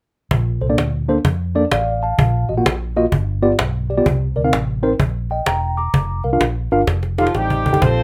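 A worn, slightly out-of-tune tine electric piano carries the accompaniment in this short, soulful and hopeful uptempo gospel excerpt, its mellow, lightly overdriven tone heard as if through built-in speakers while it plays the chords from 0.3 seconds onward. Beneath it, a vintage foam-muted fingered electric bass sits up front with a dark, round, punchy amped sound. A woody cajon struck with hard hands adds faint snares and the feel of a small room, keeping a swung groove that leads into a drum fill near the close. The harmony moves through rich chords such as Bbmaj9, Ebmadd9 and Cm9 before settling on an F9. At 7.2 seconds a loose jazz-style horn section enters in octave doubling with the melody, with light vibrato and a smooth top. A moderate studio reverb and a rough home-demo mix give the piece a casual, intimate character.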